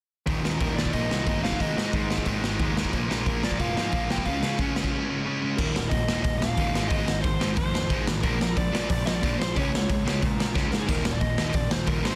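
A dry, dense, heavily limited mix opens this short, rowdy punk rock cut, which charges along at 181 BPM in a straight 4/4 with an upbeat energy. Up front, a raw garage drum kit sounds saturated and gritty, with a boomy kick, a medium-tuned snare, a rolled-off top and a pumping, bright stone-room character, working crash, splash, hi-hat, snare and kick, and a fill lands at 10.5 seconds. A dark, sludgy overdriven guitar grinds out the riff throughout, joined until 5.6 seconds by a tight, bright distorted guitar sitting in the background, while a growly fuzz bass, overdriven and also set back, holds the low end. From 0.6 seconds a crunchy overdriven lead guitar carries the melody high above the riff, trailed by tape echo. The chords cycle through Eb, Ab, Bb and Db in two passes, with the second section beginning at 5.6 seconds as the tight guitar drops out.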